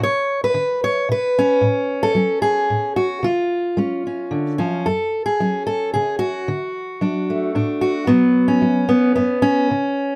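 A fingerpicked steel-string acoustic guitar plays alone and sits up front, its fresh strings ringing warm with audible finger squeaks and an auditorium body under light reverb. This reflective, haunting folk excerpt moves at 112 BPM in a straight 3/4, set in F# harmonic minor and spanning F#2 to C#5. A short phrase is stated twice, first over Bm, F#m/A and C#, then over F#5, D and B5 from 4.9 seconds.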